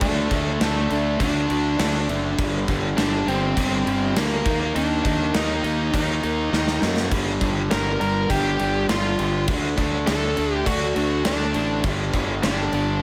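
A gated 80s drum kit with a punchy kick, medium-tuned snare and bright cymbals sits up front in this aggressive, heavy hard rock excerpt in G minor at 102 BPM, with a fill at 6.5 seconds, alongside a bluesy, distorted lead guitar melody, a growly fuzz fingered electric bass and two overdriven semi-hollow guitars playing a riff in the background over D5, G5 and Eb5 chords, set in light small-room reverb.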